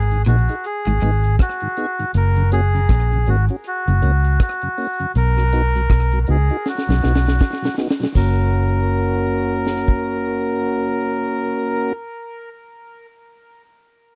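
A dark, round, foam-muted electric bass sits up front in this laid-back, uplifting roots reggae cut from a longer piece, anchoring a swung 4/4 groove. A reedy, nasal melodica with tape echo carries the breathy melody, while a mellow tonewheel organ with key click and a slow rotary speaker fills in the accompaniment. The deep reggae drum kit pairs a high-tuned snare and tight kick with rim click, hi-hat and crash cymbal, its rolled-off sound touched by slapback echo, and a drum fill arrives at 6.7 seconds before the second section begins at 8.2 seconds. A slightly broken-up, picked electric guitar with ensemble chorus plays a brief riff in the background, stopping at 1.2 seconds. The chords move from G#m to F# and B before returning to F#, and the dry, close 1970s-style studio sound keeps the mix intimate.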